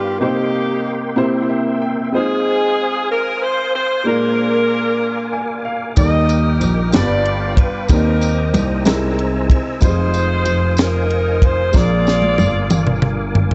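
Slow gospel in a straight 6/8, reverent yet jubilant, cut from a longer piece. A bright, vibrato-laden saxophone section carries the melody over woody upright piano, both soaked in dub echo, with fills from the piano at 1.2 and 5.0 seconds, while a clean tonewheel organ holds sustained chords through a slow rotary speaker with key click. At 6.0 seconds a dark, boxy concert grand enters on the bass line alongside a dry, tight funk drum kit and a jingly tambourine tucked in the background, the drums closing with a fill from 11.7 seconds in an echo-heavy, small-room mix.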